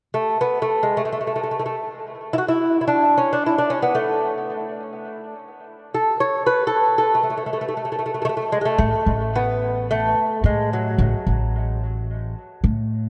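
A delicate, fingerpicked lute with gut double strings and tape echo opens this festive, warm Persian modal excerpt in A dastgah mahur, playing in free time until 11.8 seconds, and at 8.8 seconds a woody, thumpy pizzicato upright bass joins it up front in a dreamy mix soaked in lush hall reverb.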